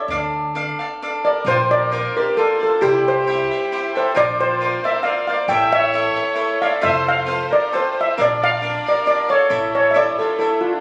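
A swung 3/4 pulse drives this passionate, dramatic mariachi fragment, where a shimmering, airy steel pan played with medium rubber sticks leads up front over crisply picked cavaquinho and woody, growly pizzicato upright bass, joined at 1.3 seconds by a smooth, classical-style trumpet with light vibrato and at 1.5 seconds by a lush, distant bowed violin section in the background, the whole captured on a phone in the room with moderate hall reverb, compression and a faint mains hum.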